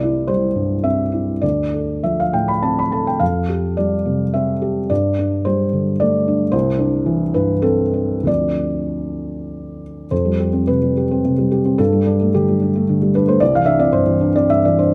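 Neoclassical minimalist piano in a rubato 3/4, drifting between 91 and 116 BPM and tuned to A4 = 443 Hz, this intimate, wistful excerpt from a longer piece features a solo felt-muted upright piano, soft and dark with thick felt and sitting up front in close, detailed microphones and light reverb, spanning C2 to B5 as it cycles through Cadd9, Dm7, Fsus2 and Gsus2 across 14.9 seconds.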